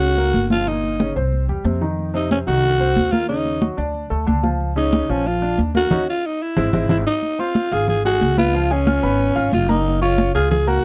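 The recording is dry and closely miked, with crisp detail and little room sound, and it is a short cut from a longer Afro-Cuban jazz piece in a lively, danceable 4/4 with a straight feel. Up front, a raspy, gritty alto saxophone carries the melody with a growling, breathy tone and light vibrato. Beneath it, an intimate concert grand piano supplies the accompaniment, its deep bass and audible action noise giving it a natural presence. A woody, growly pizzicato upright bass sits prominently in the mix, while high-tuned congas with a thick, damped skin are played with soft hands and a warm touch. The band hits an accent from 5.9 to 7.2 seconds, with a drum fill starting at 6.4 seconds, before the music moves into a new section at 7.2 seconds.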